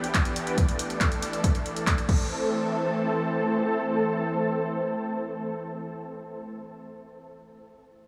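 A driving pulse at 139 BPM in straight 4/4 opens this short cut from a longer uplifting trance piece in A minor, with a punchy, tape-warm electronic kick sitting up front from 0.1 seconds and an analog drum machine adding crash cymbal, handclaps and hi-hat. Both drum parts stop at 2.2 seconds, leaving the analog string pad to carry the rest of the fragment alone until it ends at 6.5 seconds. That pad is the bittersweet heart of the track: silky, detuned sawtooth strings with a slow attack, long release and vibrato, thickened by ensemble chorus and breathing with sidechain pumping. Its bright, up-front chords move from Em7 to Dsus2 and settle on Am as the music passes into a new section around 2.3 seconds. The whole mix is soaked in a huge, dreamy reverb with a seven-second tail, giving the sound a hazy, floating quality beneath the drive.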